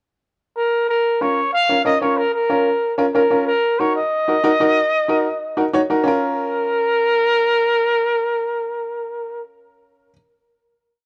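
Driven by a brisk straight four-beat Latin groove, this short, fiery and danceable piece opens with a breathy, whispered trumpet at 0.6 seconds carrying a motif-based melody of call phrases with vibrato, joined at 1.2 seconds by a bright upright piano with audible action noise playing rhythmic triad chords over a minor harmony, all captured in a dry, close 1970s-style studio sound until the final chord rings at 6.1 seconds.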